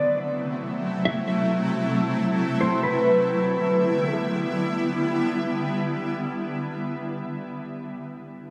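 A mellow, dark electric guitar carries a clean, fingered melody through phaser, low-pass filter and tape echo until 4.1 seconds, floating over a bright, up-front ambient pad whose detuned, chorused chords hold until 7.0 seconds, moving from F#m7b5 to Em7 in this spacious, ethereal free-time hip hop excerpt set in an echo-heavy mix with light studio reverb.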